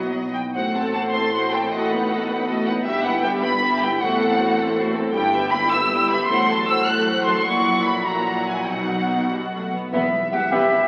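A restless, dramatic classical passage in a rubato 6/8 opens with a focused, up-front violin section singing the vibrato melody over a woody second violin line, smooth background violas, ringing thumb-plucked harp arpeggios, a rich cello bass and a distant, very quiet double bass, before a pure, tongued flute and close, dry hard-mallet timpani enter at 9.9 seconds and a present solo bassoon appears at 10.5 seconds, all bathed in recital hall reverb and the crackle of a very old 78 rpm record.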